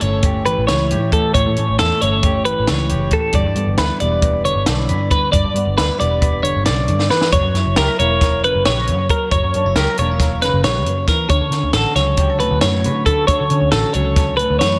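Set in a straight 9/8, this intricate, playful math rock and midwest emo passage is cut from a longer piece and drives forward on a dry, compact cocktail kit with a high-tuned snare and punchy kick, broken by a short drum fill at 7.0 s. Up front, a bright, twangy twelve-string electric guitar spins compressed arpeggios through phaser, analog delay and slapback echo, while a slightly broken-up, fingered electric guitar fills out the accompaniment beneath it with lush chorus and its own slapback. A dark, round, foam-muted vintage bass anchors the A7, G6, F#7 and Dmaj7 changes, and a lush hall reverb lends the whole an arena-sized sound.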